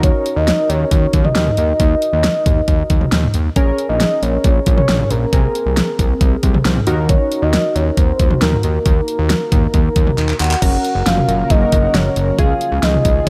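Synth-pop excerpt at 136 BPM in a straight 4/4, cool and driving, with a soft octave-layered synth lead carrying the melody over chorused, rounded analog keys and a fat, detuned sawtooth bass that sits up front. An overdriven, electronic pop drum kit with a knocking kick, fat snare, hi-hat, handclaps, toms and crash cymbal drives the groove, and a drum fill at 10.2 seconds leads into a new section moving from Gb to Db. At 11.0 seconds a lush unison pad with slow attack and chorus enters in the background, all inside a light reverb.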